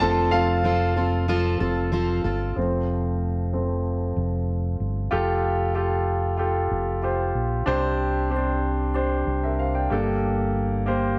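This anthemic, uplifting piano-driven pop piece in F major at 94 BPM opens with a concert grand piano, fingered electric bass and fingerpicked steel-string acoustic guitar all sounding together. The up-front jumbo guitar has a full-bodied tone with fresh strings and plays a short riff before dropping away at 2.6 seconds. The warm grand piano carries a solo through the opening stretch and then holds the accompaniment to the end, its open voicing and long sustain reaching from deep bass up to its upper notes. Underneath, the bass sounds dark, round and punchy, direct and amped. The harmony rests on F, then from 5.1 seconds moves through Fadd9, Csus2 and Gmadd9, and a wet echo-chamber reverb with studio ambience gives this excerpt from a longer piece a spacious, lingering air.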